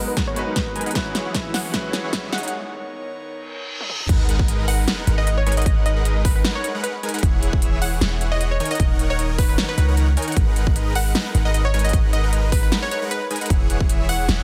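Future bass with a bittersweet, lush mood in a half-time feel, this excerpt opens on a build-up where a glassy wavetable pluck melody with chorus and dub echo, an airy breathy pad and huge detuned supersaw chords rise through filter sweeps beside a bright concert grand piano, all over a drum fill, with a very quiet riser, reverse cymbal and sub drop adding tension before a short break at 2.5 seconds. At 4.1 seconds the drop lands with an impact, bringing in a deep, boomy 808-style bass with tube saturation that pumps alongside the supersaws and pluck, beneath a punchy electronic kick and a big-room kit of huge snare, crisp hats, crash and toms. The mix is dry, dense and heavily limited, with the chords moving through lush ninth and sixth-nine voicings.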